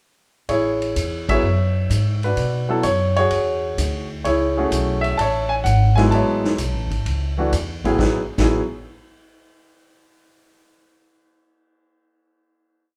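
A warm grand piano leads this short, relaxed and playful jazz piano trio piece in A major at 128 BPM with a 4/4 swing, spinning a motif-based melody in sentence-like phrases over syncopated comping in quartal voicings, polished and up front. A woody, pizzicato upright bass walks beneath it, while a vintage drum kit with dark cymbals, a punchy kick and a rolled-off top keeps a ride cymbal pattern, the band hitting an accent together at 1.2 seconds. The trio plays live in one room with a wet large-studio reverb, moving through Amaj7, Bm and E13 before settling on a final A5 chord from 8.0 seconds.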